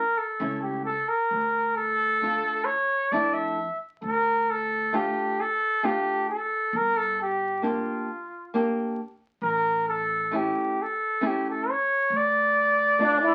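A mellow, distant cornet with light vibrato opens this festive yet soulful klezmer excerpt in 3/4, joined at 0.4 seconds by a small, fingerpicked nylon-string guitar and a dark, woody pizzicato upright bass on gut strings, while a bright, plunger-muted trombone adds a brief wah-wah second line at 13.0 seconds, all steeped in roomy ambience and the crackle of a very old 78 rpm record.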